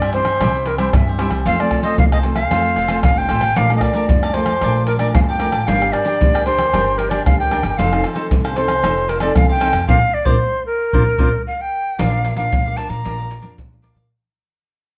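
Recorded in a moderate studio room with a short ambience, this lively, festive cut from a longer samba-choro piece in Bb major moves at 114 BPM in a straight 4/4. An up-front, breathy and reedy jazz flute with vibrato, a crisp chiff and rolled-off highs carries the melody through plate reverb. Beneath it, a picked cavaquinho, a fingerpicked classical nylon-string guitar, a woody, thumpy pizzicato upright bass on gut strings, and a live, up-front percussion section of egg shaker, pandeiro, tamborim and deep surdo drive the groove, with a band accent at 9.9 seconds before the music fades out from 12.0 seconds.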